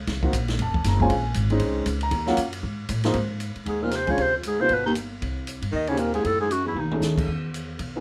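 Small-group swing and bop jazz at a brisk 233 BPM, with a sophisticated, warm mood: woody, thumpy pizzicato upright bass and an up-front grand piano carry the harmony through moving chords, while an acoustic drum kit with dark cymbals and a boomy kick drives the swing in a modest club-sized room. At 3.7 seconds a raspy, growling clarinet takes the melody with light vibrato and scooped notes, joined by a clear, close-miked baritone saxophone on a second line, both sounding until 7.0 seconds. A drum fill arrives at 6.8 seconds, near the end of this fragment cut from a longer piece.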